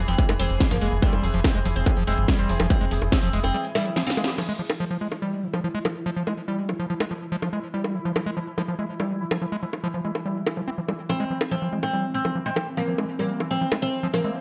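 A squelchy, gritty acid bass riff runs through this hypnotic, intense psychedelic trance excerpt in straight 4/4, its resonant, saturated tone pumping against the sidechain and trailing digital delay. Underneath at the start, a distorted electronic kick and a deep, round analog bass push hard up front, both dropping out in the opening seconds, the bass by 3.5 seconds. A woody, plectrum-plucked oud with double strings carries the melody through a phaser and delay, falling silent as a drum fill and band accent mark the section change, then returning at 11.1 seconds. A techno kit of cracking snare, metallic hi-hats, bongos and crash cymbal keeps driving throughout, while a bright, detuned gated pad holds pulsing, tempo-synced chords bathed in chorus and reverb. At 13.8 seconds a very quiet formant-sweep wobble bass slips in just before the cut, all within a moderate digital room.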